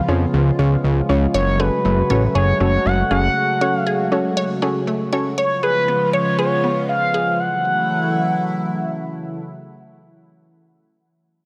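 A melancholic, nocturnal pop excerpt at 119 BPM in F# harmonic minor, where a smooth, expressive synth lead with vibrato and chorus sings the melody over a shimmering, retro pulse-width pad that holds sustained chords across the C#7 and F#madd9 harmony. A fat, saturated analog bass with a filter sweep sits up front until 3.3 seconds, while a soft, round pluck adds dark, chorused accompaniment until 5.3 seconds. From 1.3 seconds a juicy, squelchy blip pluck spins quieter arpeggios through phaser and digital delay, all in a light reverb.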